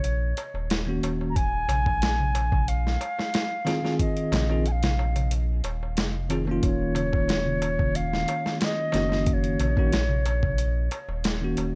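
A brooding, smoky trip hop groove at a straight 4/4 pulse, this short passage is cut from a longer piece. A gritty, sampler-style soul drum kit sits up front with a thumpy kick, a medium-tuned snare and hi-hat, its overdrive and studio reverb giving it a dusty grit. A round analog bass holds the low end with deep, sustained tones warmed by tube saturation. Behind them, a small, crisp metal-shelled darbuka adds high percussion in the background. A bell-like tine electric piano enters at 0.9 seconds, clean and direct with tremolo, moving through Ebm7 and Fm/Eb before returning to Ebm7. Over this, a mellow wooden flute carries the melody with an airy, straight tone and soft attack, trailed by tape echo, all set in a digital ambience.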